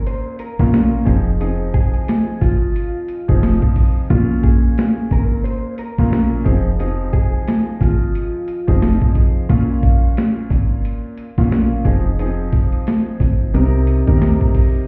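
A swung boom-bap groove at 89 BPM in 4/4 drives this tough, reflective hip-hop cut in F minor, with a gritty, overdriven sampler-style kit of thumpy kick, snare and hi-hat up front beside a deep, round, foam-muted fingered electric bass. A woody upright piano with audible action noise and a cassette-tape tint carries the Bbm and Fm7 changes before closing on Cm7, while a dark, clean electric guitar plays a mellow melody through digital delay until 9.0 s. The mix sounds muffled, as if heard through a wall, with a stone-room character.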